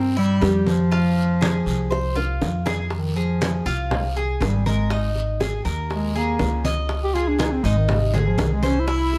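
Danceable and nostalgic, this short excerpt from a longer piece sits in Cuban son and guajira at 120 BPM in 4/4 with a straight feel, in F minor, and carries a dark, warm production with light reverb. A mellow bass clarinet leads the melody up front from the start, smooth on top and classical in style, bathed in plate reverb, and from 2.9 seconds it takes a solo that runs to the end. Beneath it, the upright bass is woody and thumpy, a plucked gut-string sound sitting up front, while the Cuban tres picks metallic arpeggios on its doubled strings, some in octaves. Congas join at 0.2 seconds with a damped, low-tuned, vintage thud, and at 0.4 seconds tight high-tuned bongos and a raspy, saturated guiro come in, the hand drums kept in the background. A drum fill between 1.9 and 2.9 seconds leads out of the opening section, and the harmony moves from a rootless C7 to Fm, then to Absus2 and Dbsus2.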